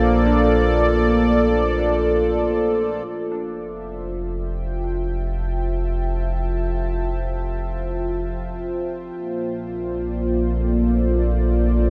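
Ambient music in free time and F major, this luminous, warm excerpt is cut from a longer piece and bathed in a wet cathedral reverb with a long, lingering tail. An analog pad holds sustained chords up front for the full 11.9 seconds, its smooth sawtooth-and-triangle tone carrying a sub octave, a slow attack, a long release and a chorus sheen. Beneath it, a round analog bass sits deep and dark, anchoring the harmony with a sustained blend of sawtooth and sine. A soft FM bell traces very quiet arpeggios on D4 with a pure, decaying tone colored by chorus and phaser, and it stops at 3.5 seconds. The harmony drifts from Bbmaj7 to Fmaj7 at 3.1 seconds, then returns to Bbmaj7 at 9.2 seconds.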